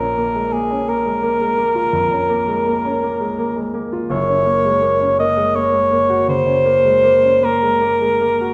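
In a rubato 12/8 lilt at 49-57 dotted-quarter beats per minute, this solemn, melancholic romantic classical fragment in Bb minor sets a dark, close-miked cor anglais with light vibrato singing the melody up front over a clear concert grand piano whose deep bass and open, short-sustained chords move from Bbm to Gb at 4.1 seconds, all bathed in the wet reverb of a recital hall.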